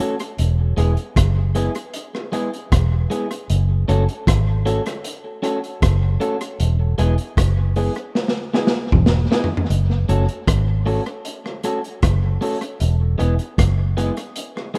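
Roots reggae in F# minor at 77 BPM, meditative and hypnotic, this excerpt from a longer piece turns between E and F#m chords over a straight 4/4. A gritty, saturated breakbeat kit with a punchy kick and a rolled-off top sits up front beside a round, foam-muted electric bass that enters at 0.4 seconds, while a slightly broken-up picked electric guitar with tube saturation and tape echo plays accompaniment at a lower level. A drum fill from 8.2 to 9.7 seconds leads into the second section, all within a rough home demo mix with light studio reverb.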